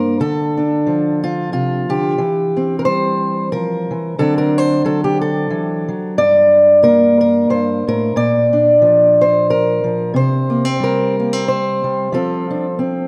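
Folk for solo fingerstyle acoustic guitar, haunting and wistful, moving at 91 BPM in a lightly swung 3/4 and tuned to A4 = 444 Hz. A fingerpicked acoustic archtop guitar sits up front, ranging from G2 to D5, with audible finger squeak as it moves through Dm, C/E, D7, Gm, Bb and C5 before settling on F at 12.1 seconds. A moderate concert hall reverb surrounds the dark production, and this short 13.1-second passage is cut from a longer piece.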